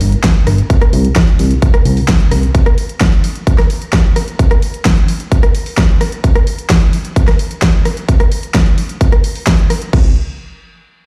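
Festival progressive house, anthemic and euphoric and cut from a longer piece: a fat, detuned sawtooth analog bass with sidechain pumping, ring modulation and a filter sweep sits up front until 2.5 seconds and returns briefly at 9.9 seconds, while a punchy electronic kick enters at 0.2 seconds beside a layered big-room dance kit of crash cymbal, hi-hat, rim click and huge snare, both overdriven, with the mix set in a large studio reverb as if played on a big sound system in a bare room.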